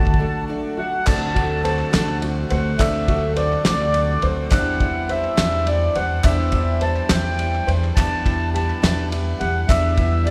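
This excerpt from an indie folk piece opens with a drum fill on a cloth-damped, thuddy kit, followed by a short break before the full arrangement settles in at 1.1 seconds. It moves at 70 BPM in a straight 6/8 in D mixolydian, tuned slightly sharp to A4 = 444 Hz, and its mood is warm and anthemic. A reedy, mellow accordion carries the melody up front with slow beating, while a pizzicato upright bass with woody, thumpy gut strings sits equally forward beneath it. The drums pair a tight kick and fat snare with dark crash and ride cymbals. Quiet, crisp group handclaps add a close, dry texture. Behind them, a shimmering, octave-doubled twelve-string guitar is picked in the background, and a slightly detuned upright piano with audible action noise plays arpeggios. A boxy grand piano adds accompaniment, and a breathing, nasal harmonium fills out sustained chords. The harmony moves from D to D7, then to Cadd9/E at 4.5 seconds and Em7 at 8.0 seconds, all set in the lush reverb of a church or concert hall.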